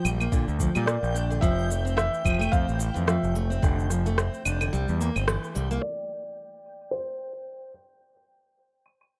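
Light, filtered digital ambience frames this hopeful folktronica fragment at 109 BPM in F major, where picked steel-string acoustic guitar arpeggios with finger squeak and delay sit over a growling, overdriven, up-front fingered electric bass, a soft tape-warm electronic kick, electronic claves, shaker and rim click, and a dreamy reversed swelling texture in the background, while a mellow felt-muted upright piano melody with audible action noise and delay enters at 0.9 seconds, the kick drops out at 4.7 seconds, and a filter sweep carries the closing stretch from 5.8 seconds.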